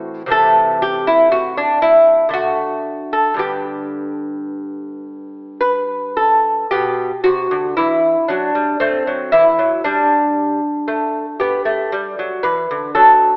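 Classical baroque-style dance in 3/4 and G major, an introspective, grave passage cut from a longer piece, where a solo fingerpicked lute with nylon double strings, some octave-doubled, plays delicate, bright lines up front at a rubato 54-60 BPM, moving through a second section from 6.7 seconds, all heard through a moderate scoring-stage reverb and an AM radio sound.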